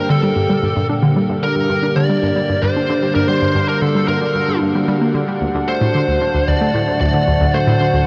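A steady, straight four-beat pulse anchors this cosmic, hypnotic stretch of sequencer-driven space music, cut from a longer piece. An analog pluck drives the riff in the low and middle register, its round, detuned sawtooth and square tone carrying a fast attack, short decay, a filter sweep and a touch of noise, thickened by chorus and delay. Alongside it, an evolving wavetable pad holds mellow sustained chords that morph through a phaser and their own built-in reverb. Up front, an overdriven electric lead guitar plays a picked, biting melody high in the mix, trailed by delay. From 3.2 s a very quiet, breathy tuned-noise texture drifts in like wind, and the harmony shifts from G minor to D at 5.4 s, all set in a huge, dark ambient reverb.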